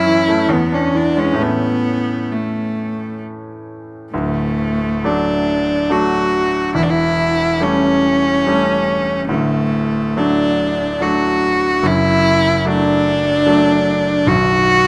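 A rich, smooth solo cello, bowed with light vibrato, carries a tender melody up front in this romantic classical duo, moving in a flexible, rubato 3/4 at around 64-75 BPM. A bright, brilliant grand piano accompanies it throughout, as the music settles in A major before shifting to D major at 4.1 s. Close, detailed microphones capture both players within a moderate recital hall reverb in this brief fragment of a longer piece.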